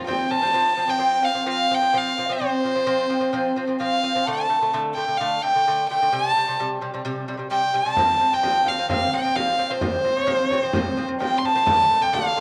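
A straight, galloping 4/4 pulse carries this vast Mongolian folk passage, cut from a longer piece, with a floating, airy-bowed violin leading the melody up front over delicate, fingerpicked nylon-string lute arpeggios. A very quiet bamboo dizi with a buzzing membrane adds a hollow second line, while a husky horsehead fiddle drone sounds only until 0.6 s. A deep, distant frame drum appears briefly at the start and returns from 8.0 s, and the passage sits in a moderate plate reverb.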